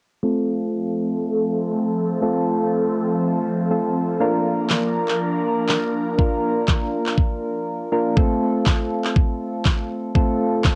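Upbeat and summery, this dance-pop excerpt at 121 BPM in F major opens with mellow, round electric-piano-like synth keys and a breathy, detuned pad under a filter sweep, both pumping with sidechain and carrying a cassette-tape haze, before a pop drum kit with a knocking kick, fat snare and handclaps enters at 4.7 seconds, drops out briefly just before 8.2 seconds, and returns as the chords move from F to Bb and back to F in a small room.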